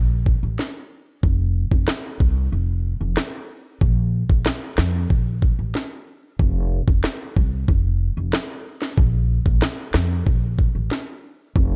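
A woody, growly upright bass, plucked on steel strings and sitting up front, anchors this bouncy, sultry dancehall excerpt at 93 BPM, its thumpy low notes running from 0.0 to 11.8 seconds. Beside it, an electronic island pop drum kit enters at 0.3 seconds with a knocking kick, rim clicks and a sharp snare, re-recorded in a large room and also placed up front. The dark production keeps reverb to a minimum, and a break runs through the opening 9.0 seconds.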